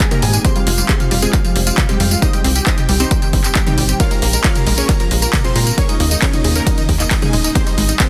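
Uplifting trance at 135 BPM in F minor, this eight-second cut from a longer piece feels emotional and driving, moving through Fmadd9, Cm, Bbm7, Eb7sus4 and Abmaj7. A lush, full-bodied unison pluck carries the melody with a wave-folded, detuned edge, while a detuned supersaw stab sits higher in the background as a second line. Beneath them a quieter unison pluck spins phased arpeggios, and all three leads pump with the sidechain and trail tape echo. A shimmering, ethereal pad with an octave-up shimmer and granular chorus enters at 0.1 seconds, holding dark, very quiet sustained chords. A layered, up-front electronic kick and an overdriven analog drum machine with handclaps, hi-hat, ride, tambourine and toms drive the groove, joined at 0.2 seconds by a tight sawtooth-and-square sequencer bass that also pumps. The mix is dry, dense and heavily limited in a modern style.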